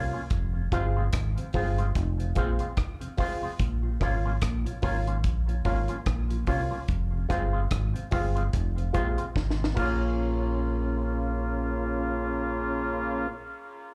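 The deep dub bass sits up front, dark and round, holding the low end under this serious, laid-back roots reggae cut in Bb dorian at 73 BPM, with a swung sixteenth-note feel. Beside it, a dry, smooth drum kit with a high-tuned snare and tight kick plays kick, snare, rim clicks, hi-hat and crash until 10.0 seconds, closing its run with a fill as the chords shift from Fm back to Bbm. Around them, a twangy, clean electric guitar through an envelope filter and a boxy, woody upright piano carrying stabs both ring with slapback echo, the guitar also trailing dub echo, while a lightly overdriven tonewheel organ adds key click, chorus vibrato and a slow rotary speaker. The band hits accents together from 6.9 seconds, and at 8.9 seconds a nasal, straight-muted trombone section enters up front with a second line, its light vibrato caught in dub and slapback echo. It all sounds like a live gig heard through a club PA, with the room's reverb around the band, and the piece is cut from a longer performance.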